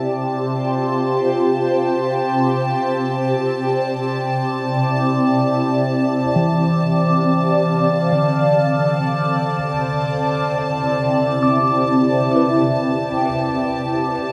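Ambient in free time and C major, warm and peaceful, this excerpt rests on a shimmering, ethereal pad held up front with chorus, phaser and its own reverb, sustaining chords that drift from Fsus2/C through Cadd9 and Dm/C. A clear, earthy violin section fades in gradually as a quiet bowed texture on a high A5, and at 6.4 seconds a mellow tine electric piano joins with arpeggios carried off by dub echo. The whole mix is steeped in a wet spring reverb with a 2.5-second decay, giving it a soft, echo-heavy haze.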